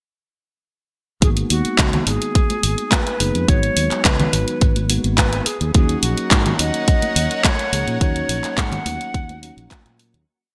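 Cosmic and sleek, this short nu-disco piece in G# minor grooves at 106 BPM on a punchy four-on-the-floor electronic kick, a pop drum kit with gated-reverb handclaps and hi-hat, ringing congas in the background, a growly, funky fingered electric bass and bell-like tine electric piano chords with analog chorus and sidechain pumping under an airy, hollow concert flute hook with delay, while a biting violin section enters at 5.7 seconds with sustained chords over the D#m7 that follows the opening G#m7 before the bright 1980s-style digital mix fades out from 7.3 seconds.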